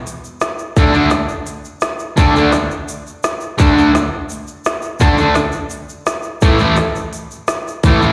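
Garage rock in a swaggering, rowdy mood, this brief excerpt cut from a longer piece drives along at 170 BPM in a straight 4/4. An organic electronic drum kit sits up front with a tight kick, woody snare and crisp hi-hats, its tape-tinged sound carrying a slapback echo and the air of a large room. A tube shaker adds a grainy, bright texture from a small room, sitting low in the mix. At 0.8 seconds a double-tracked fuzz guitar enters up front with a bright, distorted, picked riff between A2 and D4, moving from a D5 power chord to A5 at 6.4 seconds, its tone also touched by slapback echo. The whole thing sounds like a live gig heard through the venue's PA, with moderate club reverb and a recital hall ambience around it.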